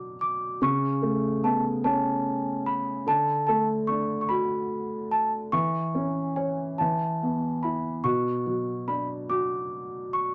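A children's lullaby in A major, this short excerpt from a longer piece moves at a gentle 48 dotted-quarter beats per minute in a rubato 6/8, with a tender, innocent mood. A celesta carries the melody between G#5 and D6, its bell-like, sweet tone struck by hard felt hammers. Beneath it, a felt-muted upright piano supplies the accompaniment, sitting up front with a soft, dark, intimate sound that has a vintage character. The harmony drifts from B minor through an A add9 over C# and D, then to E6 and E5 before settling back on B minor at 8.0 seconds. Both instruments play throughout the 10.3 seconds, framed by a moderate studio reverb that lends a gentle sense of space, and the slightly low tuning of A4 = 438 Hz adds to the hushed, bedtime feel.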